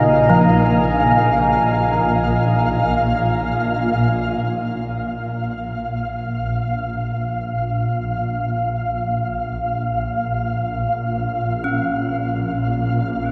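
A dark ambient drone in free time and Bb minor, this ominous, cavernous passage is cut from a longer piece and set in a vast, echoing space with a wet cathedral reverb. A deep, moody analog pad holds sustained chords up front, its detuned, wave-folded tone thickened by lush chorus and shimmer reverb, resting on Eb5/Bb before it stops at 4.8 seconds, where the harmony turns to Bb minor. Beneath it, a swarming drone in the low register stays throughout, tense and evolving with a granular, detuned edge. A gamelan-type bronze metallophone plays ringing arpeggios across the full 13.3 seconds, its bright, close-miked strike trailed by diffuse ambient delay and shimmer reverb. High above, a flickering, grainy texture sustains a single F5, adding a restless glint to the cavernous haze.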